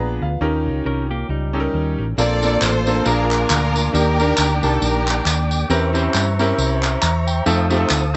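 Soulful and hopeful, this swinging uptempo gospel fragment opens with a brilliant, up-front concert grand piano and a round, punchy hollow-body electric bass, while a mellow French horn section holds distant chords and a clean, compressed semi-hollow guitar adds a brief second line from 0.9 seconds. At 2.2 seconds a lush, bowed string section takes the melody with expressive vibrato, portamento and tape echo, and a soft, flute-like tonewheel organ with key click and fast rotary speaker sustains chords in the background. Tambourine and group handclaps bring a vintage, band-limited lift under the light small-room ambience, and the strings carry the tune until 5.7 seconds.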